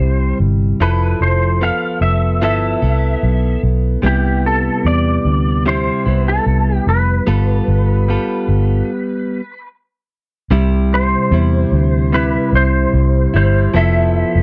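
A straight, unhurried 4/4 groove sets a laid-back, sunny bedroom-pop mood in this indie pop excerpt, with a round, punchy, foam-muted vintage bass sitting dark and up front beneath a directly recorded clean electric guitar whose picked, compressed chords shimmer through lush chorus and a warbly pitch drift. A clean lap steel carries the twangy slide melody with ensemble chorus and slapback echo, drifting over chords like Fmaj7#11, Cmaj7 and G9. The dry, close 1970s-style studio sound frames a stop at 8.9 seconds before a new section arrives at 10.5 seconds.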